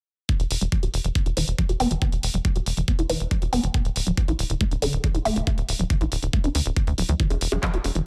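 Psychedelic trance in a straight 4/4, this short cut from a longer piece feels intense and driving. A woody, wave-folded pluck carries the riff with a fast attack and short decay, coloured by chorus, cassette tape grit, tape echo and sidechain pumping, while a filter sweep runs across the synth arpeggio sound from 0.3 to 8.1 seconds. Underneath, a tight sequencer bass blends sawtooth and square waves into a punchy, mellow filter pluck with a moving notch, sitting up front in the mix. A knocking electronic kick drum, also up front, anchors the groove, joined by a layered drum and bass kit of bongos, handclaps and bright hi-hats, with both drum parts re-recorded in a small room. The harmony moves from E5 to D5 at 3.7 seconds and back to E5 at 7.2 seconds, and the sound stays dry and close with little reverb.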